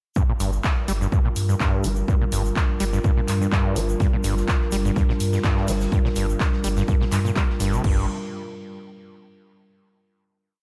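A driving, trippy acid house groove opens at 0.2 seconds on a Gm7 chord, with a punchy four-on-the-floor electronic kick, a grainy hand-played shaker, a dark, detuned analog pad pumping against the kick, and an up-front, squelchy acid bass line with accents and slides, its resonant filter sweeping until 7.8 seconds through distortion and tape echo. A thick, saturated sub bass plays off-beat notes beneath, while a punchy analog drum machine adds programmed claps, open hats and crashes, and from 4.0 seconds a very quiet looped breakbeat from a big rock kit with a fat snare slips in underneath. The dreamy mix is soaked in plate reverb, and the piece closes on a final chord.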